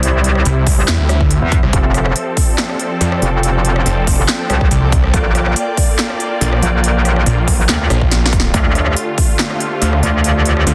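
A heavy, aggressive half-time wobble dubstep excerpt at 141 BPM opens with a metallic, overdriven wobble bass up front, bright detuned supersaw chords carrying vintage 12-bit grit and sidechain pumping over C, F, Bb and Dm, a soft breathy pad with chorus and phaser in the background, and a punchy, crisp big-room kit of snare, hats, claps and rim clicks, joined at 0.5 seconds by a snarling distorted saw bass and at 0.7 seconds by a tape-warm electronic kick, with a drum fill at 8.1 seconds, all in a dry, dense, heavily limited mix.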